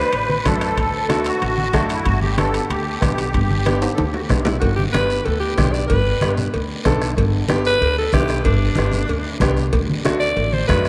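Festive, joyful cumbia at 188 BPM in G major opens with a reedy, shimmering musette accordion solo over a brilliant, intimate upright piano with audible action noise, woody, growly pizzicato upright bass, low-tuned, damped congas in the background, a close, dry guiro, very quiet ringing timbales and cowbell, and a distant soft-beater bombo. A drum fill arrives at 3.8 seconds, the accordion stops at 4.3 seconds, and a gritty, raspy alto saxophone takes the lead up front from 4.5 seconds with vibrato and scooped notes. The music sits in a vast, echoing cathedral reverb, and this passage is cut from a longer piece.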